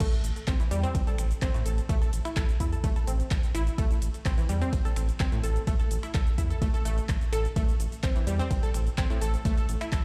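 Heard as if through a big sound system in a bare room and bathed in large studio reverb, this expansive, dreamy progressive house excerpt sits at a drop, in A minor at 127 BPM with a straight 4/4 feel, on an A5 chord. An overdriven, deep electronic kick, re-recorded in a small room, sits up front, while a tape-warm deep house kit adds metallic hi-hats, ride, crash, cabasa, handclaps and finger snaps. Beneath it, a round, dark analog bass blends sawtooth and sine with evolving ring modulation and sidechain pumping, and a lush, punchy unison pluck spins detuned, wave-folded arpeggios from A2 to A5 with a filter sweep, delay and the same pumping throughout the 10 seconds.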